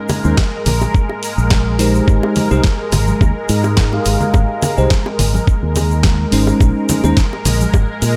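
Sleek and sensual, this short nu-disco excerpt at 106 BPM with a light 16th-note swing moves from Bbm11 to Abmaj7 and back, built on an up-front, thumpy sampler kick, a punchy, envelope-filtered fingered electric bass, a layered house kit with a punchy snare, close and dry ringing bongos, congas and egg shaker, a bell-like tine electric piano treated with phaser, low-pass filter and analog delay, and a lush, detuned unison pad that pumps under sidechain with chorus and phaser, all caught in a gritty hardware sound with light reverb.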